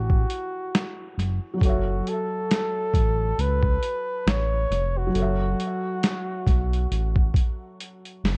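Mellow and nostalgic, this short lo-fi hip hop excerpt moves at an unhurried 68 BPM in 4/4 with a gentle swing on the sixteenths, resting on an F#m7 chord. An up-front flugelhorn carries the solo melody in a jazz style, its tone smooth on top with a light vibrato and a trail of tape echo, before it drops out at 7.6 seconds. Beneath it, a felt-muted upright piano plays soft, boxy accompaniment, intimate and dark, with audible action noise, cassette tape coloring and its own tape echo. A sustained sawtooth and square-wave synth bass with a touch of ring modulation sits low and prominent, while a compressed, pitched-down boom bap drum kit enters at 0.1 seconds with a thumpy kick, a medium-tuned snare and hi-hat, gritty with vintage 12-bit sampler character and the sound of a small room. A drum fill from 7.8 seconds closes the passage in an echo-heavy mix that carries little reverb.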